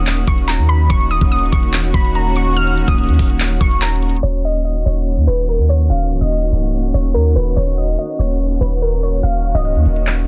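A deep, boomy 808-style bass sits up front in this brooding, hard-hitting trap cut, its sine tone carrying a noise layer, a fast attack and a decaying tail. The electronic drum kit arrives at 0.1 seconds with a knocking kick, metallic hi-hats and handclaps, also placed up front in a half-time feel. Above them, a glassy wavetable pluck plays the melody with a crystalline, digital edge, colored by chorus and tape echo. A chamber string section holds sustained bowed chords underneath, played sul tasto with light vibrato for a close, intimate ensemble sound. From 4.2 seconds a filter sweep reshapes the second section, all set in a digital ambience with a dense, heavily limited modern master and a low-pass filter, in a passage cut from a longer piece.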